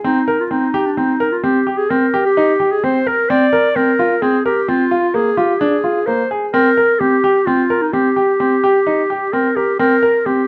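Contemporary chamber music in 7/4 at 129 BPM, this brief, playful and restless passage is cut from a longer piece and moves through Cm7, Bbsus2 and C7(no3) harmonies. A bright, brilliant and natural-sounding baby grand piano plays arpeggios with long sustain, while a warm, smooth-topped clarinet carries the classical-style solo melody, both placed up front. Light reverb and close, detailed microphones give the pair a clear, present sound.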